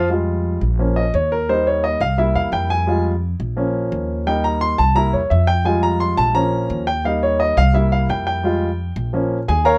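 Danceable and driving, this salsa cut moves at 172 BPM in 4/4 with a straight feel, set in F minor. A clear baby grand piano carries the accompaniment from the start to 9.8 seconds, its polished, present tone sitting up front and featured as a solo across the whole passage. Beneath it, a plucked upright bass with steel strings gives a woody, thumpy low end, dark and close in the mix, playing throughout. The harmony cycles through Fmadd9, Bbm, Eb and C7 in a steady loop, landing back on Fmadd9 and Bbm near the close. Light reverb adds a touch of space to this short portion cut from a longer piece.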